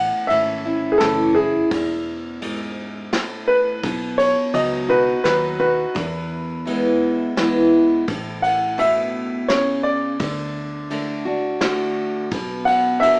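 A bright upright piano plays a woody, short-sustained solo up front from the first moment, over a full-bodied, freshly strung picked acoustic guitar and a round, dark, foam-muted electric bass, in an easygoing, nostalgic honky-tonk and classic country tune at 85 BPM in 3/4 and A major. A soft brush kit with a tight kick, snare and ride cymbal joins at 0.3 seconds, as the chords move from A through E, B and D to B minor. The sound sits a little back in a wet studio ambience with a small-speaker quality, cut from a longer piece.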